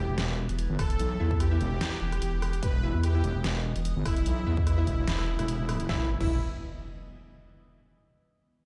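Heard through a big sound system in a bare room with large studio reverb, this short, chaotic cut from a heavy wobble dubstep track sits in E harmonic minor at 147 BPM, a half-time drop with a light swing on the sixteenths where two up-front wobble basses dominate: one heavy and resonant with chorus and overdrive, the other nasal and dark, its formant filter giving a vowel-like sweep from 0.5 to 5.4 seconds. A punchy electronic kick and a dubstep kit with a deep snare, crash, hi-hat and rim click drive beneath a smooth, airy supersaw melody carrying delay, while a morphing wavetable pad with phaser and sidechain pumping holds sustained chords in the background. Bold, orchestra-hit-like stabs with cassette-tape colour and delay enter at 1.2 seconds, and an electronic impact arrives at 5.9 seconds as the drop gives way.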